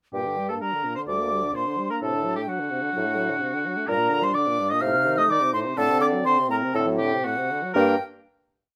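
In a straight 4/4 at a quick 118-131 BPM, this brief, complete classical-period movement for wind quintet in G minor feels stormy and restless, with an airy, crisp-edged concert flute carrying the melody up front while a clear oboe, more distant and roomy, doubles the tune at the octave and in sixths. Beneath them a roomy French horn moves between flowing broken chords and sustained chords, a present clarinet holds sustained chords, and a bassoon sets bass on the beats and sustained bass lines. Light reverb surrounds the ensemble, and the piece closes on a final G minor chord at 7.8 seconds.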